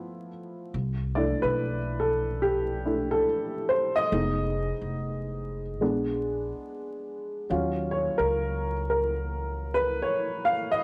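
A dark, slightly detuned upright piano leads this hazy, nostalgic hip hop fragment, cut from a longer piece, and plays a solo from 0.0 to the close at 10.8 seconds. Its mellow, worn tone sits up front and intimate, with audible action noise and a low-pass filter that softens its top end. At 0.7 seconds a plucked, gut-strung upright bass joins, thumpy and woody, also close up front, and it drops out at 10.0 seconds. The groove moves at 71 BPM in 4/4 with a 63% swing on the 16ths, in Eb minor, and the harmony runs from a rootless G13 through C6, Fm7b5 and Bb7b9 before settling on Ebm9. A moderate spring reverb and small room ambience surround the players, and a layer of vinyl crackle adds to the aged, dusty atmosphere.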